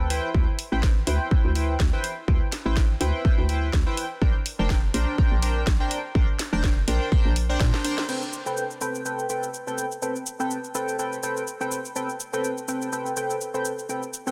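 Light reverb and a digital ambience surround a dense, heavily limited modern mix in this hypnotic deep house excerpt, cut from a longer piece and moving at 124 BPM in 4/4 with a 55% swing on the sixteenths. Up front, a chorused polysynth plays retro, glossy stabs built from pulse, sawtooth and triangle waves with a sub octave, pulse-width modulation and a filter sweep, its sustained chords pumping against the sidechain and trailing an analog delay. A hollow, bouncy FM bass knocks along underneath with fast-attack, decaying notes that also pump, while a punchy electronic kick sits prominently in the mix. A layered house kit adds crash, hi-hat, shaker and a cracking snare, re-recorded in a small room. The harmony drifts from D13sus4 to Bb69, then a drum fill and a band accent around 8.0 seconds lead into a second section on Am9, where the kick and bass have dropped out and the warm synth carries on with the kit to the end at 14.3 seconds.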